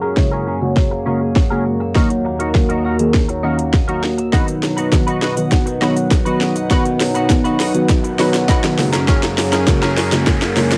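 Summery and carefree, this dance-pop excerpt builds over an up-front house drum kit, its punchy kick, cracking snare and metallic hats carrying a tape-softened warmth, beneath a shimmering, retro pulse-width pad and a deep, dark chord stab that both pump with sidechain, the stab also colored by phaser and a moving notch. A clean, compressed twelve-string electric guitar plays a riff while a bright-edged qanun sits in the background with tape echo on its arpeggios, and the passage rides a filter sweep and a drum fill throughout. Very quiet, hollow group handclaps arrive at 4.9 seconds and a faint riser enters at 7.4 seconds, the mix set in a small room and dulled at the top by its cassette home recording.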